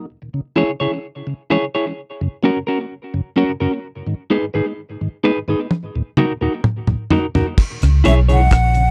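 Hypnotic and deep, this short dub reggae passage moves at a slow 64 BPM in a straight 4/4, centred on C# dorian with chords drifting from C#m through F#, G#m and D#m before returning to C#m. A soft, flute-like tonewheel organ with audible key click turns through a slow rotary speaker and tape echo, while a twangy, compressed electric guitar at the edge of break-up sits up front, its fingered tone also trailing tape echo. The deep reggae drum kit arrives at 5.7 seconds with a fill of toms, rim click, hi-hat and crash over a tight, dark kick. At 7.8 seconds a round, foam-muted vintage bass enters prominently in the low register, and a jazz flute follows briefly with an airy, tongued metal tone, vibrato and lifted highs, its notes echoed on tape. The sound is dry and close, with little reverb, in the manner of a 1970s studio recording, and the passage is cut from a longer piece.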